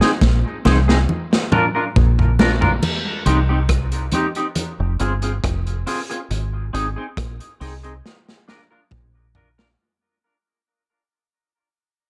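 Dub reggae at 69 BPM in 4/4 with a hypnotic, spacious mood: a crunchy, saturated breakbeat drum kit with dark cymbals and a tight kick opens on a fill, a deep, round fingered electric bass sits up front, a twangy clean electric guitar with lush chorus and dub echo plays accompaniment over chords moving from Ab and Bb to Cm and Fm, and thick-skinned congas with dub echo sit in the background until 4.8 s, all under moderate spring reverb as the piece fades out from 2.8 s and breaks down at 6.3 s before a closing drum fill.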